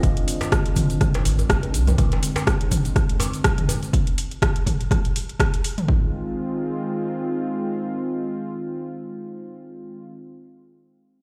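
A swung sixteenth-note afro house groove drives this hypnotic, earthy fragment. Up front sit a punchy, overdriven electronic kick and a deep house kit of metallic hi-hats, rim clicks and toms. A tight, cracking djembe joins them, with a grainy, bright cabasa in the background. A round, deep sine sub bass sounds only until 1.9 seconds. A smooth, detuned sawtooth pad with chorus and sidechain pumping holds minor-seventh harmony through to 10.1 seconds. The kick drops away at 6.0 seconds, and the whole is heard in a bare, reverberant room.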